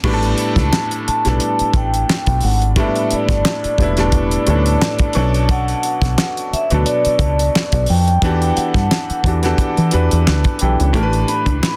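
Smooth and sultry, this neo-soul R&B groove, cut from a longer piece, rides a gentle sixteenth-note swing, with a clear, worn grand piano up front over a deep, round, foam-muted electric bass and a dry, damped 70s drum kit with a fat snare, tight kick, hi-hat, handclaps and crash. From 1.1 seconds a mellow vibraphone played with soft mallets carries the melody, its metallic ring shaded by slow motor vibrato and a slapback echo. A dark, clean hollow-body jazz guitar slips in quietly in the background at 11.0 seconds, and the whole track sits in light reverb and small room ambience under a dense, heavily limited modern master.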